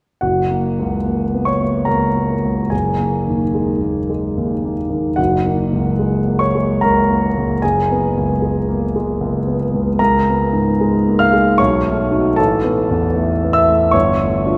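A cathedral reverb with a 4.5-second decay bathes this recording, which sounds as though it was captured in a church or concert hall. Within that wet space, a single concert grand piano sits up front, intimate and polished, its deep bass and long sustain blooming into the room while audible action noise keeps the instrument present. The music is impressionist classical piano in triple metre, played with free rubato, and its mood is hazy and luminous. The harmony drifts through suspended and added-ninth colours before reaching C#7 at 10.0 s, then B9 and Asus2, and finally Gsus2 at 13.9 s. The piano plays alone throughout this passage, which is cut from a longer piece and ends at 14.6 s.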